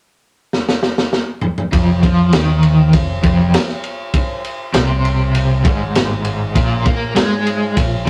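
A rough rehearsal-room sound with tube saturation and light reverb frames this hazy, hypnotic psychedelic rock excerpt at 100 BPM in 4/4, where a gritty, dark-cymballed breakbeat drum kit opens with a fill at 0.5 seconds before an up-front, double-tracked overdriven guitar riff with tremolo and a round, amped fingered electric bass enter together at 1.7 seconds on F5, shifting to Bb5 at 6.6 seconds.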